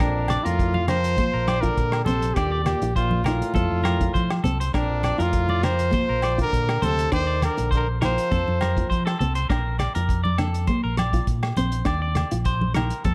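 Highlife guitar band music in Bb major at 101 BPM in a straight 4/4, joyful and carefree, heard as a short cut from a longer piece. A trumpet carries the melody up front with light vibrato and scooped notes in a jazz style, while a breathy, whispered trombone plays a soft-attacked second line in the background, both horns dropping out at 9.2 seconds. Underneath, a full-bodied nylon-string guitar is fingerpicked in a deep classical manner, and a bright, twangy clean electric guitar picks arpeggios with slapback echo. A round, amped fingered electric bass anchors the low end, and a dark, smooth soul drum kit with a punchy kick, hi-hat and rim click keeps time with a rolled-off top. Ringing agogo bells and medium-tuned congas played with soft hands sit close and dry in the background, entering at 0.3 seconds, and the chords cycle through Bb, Eb5 and F inside a small room with light reverb.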